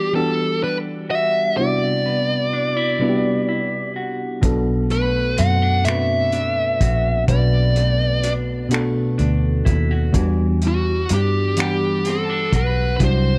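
Slow six-eight R&B in E minor at 42 BPM, yearning and sultry, this excerpt opens with a dark, overdriven lead guitar carrying the melody up front over a clean, picked electric guitar second line bathed in spring reverb and a warbling, mellow FM electric piano moving through Em9 and Cmaj9#11. At 4.4 seconds a round, punchy, foam-muted fingered bass and a muffled, cloth-damped drum kit of finger snaps, hi-hat and tight kick arrive as the harmony shifts to Bm7. The drums sound gritty and lo-fi with a rolled-off top, and the whole mix sits in a light, small-room reverb.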